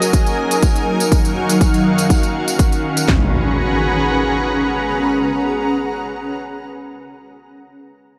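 A punchy kick and cracking snare from the up-front house drum kit drive this energetic, bittersweet piano house cut at 122 BPM in G# dorian, joined by crisp electronic hi-hats and a close, dry tambourine; the hats and tambourine drop out at 3.1 seconds, with the kit following just after. A blurred, evolving granular cloud pad carries its own reverb and pumps against the beat, while a silky, detuned analog string pad with ensemble chorus holds sustained chords moving from F#69 to D#m9 and then G#m11. An electronic impact enters at 3.1 seconds as the pads ring on through a gritty hardware sound with light digital ambience.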